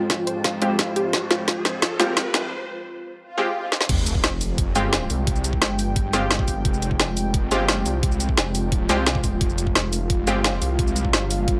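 Overdriven, up-front drums with a woody snare, bright hats, shaker and crash over a knocking layered kick drive this aggressive, futuristic dark technical drum and bass excerpt at 174 BPM in F minor, where a deep, moody analog pad and a thick, saturated detuned saw bass pump under the beat, bold, punchy orchestra-hit-like synth stabs ring with dub echo, and a warbly, lo-fi pluck arpeggio and a cloudy granular pad haze the opening build, while a riser, a swell and a sub drop sweep through the passage around the drop at 3.9 seconds.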